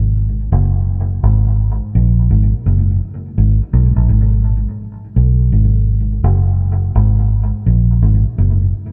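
A muted, fingered electric bass with a vintage, foam-dampened, round tone plays alone, up front and amped through analog delay, in this meditative, serious reggae excerpt in G# minor at 84 BPM with a swung sixteenth-note feel, sitting low between F#1 and B1 in an echo-heavy mix with light reverb across its 8.7 seconds.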